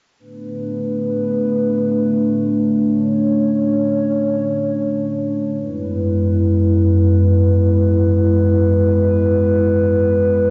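The recording has the muffled, hazy quality of a home cassette tape, its top end rolled off above 7.6 kHz and set in a small, wet booth ambience with a short 0.2 second decay. This brief trip hop fragment, cut from a longer piece, drifts in free time in B dorian and carries a cinematic, melancholic mood. A dark analog pad is the only part, holding sustained chords up front from 0.2 to 10.5 seconds across a span from F#2 to C#5. Its detuned, wave-folded tone blends square, sawtooth, triangle and sine waves over a sub octave, with slow attacks, long releases and a chorus that adds a moody shimmer. The harmony moves from Bm7 at the opening to F#9sus4 at 5.6 seconds, leaving the passage suspended and brooding.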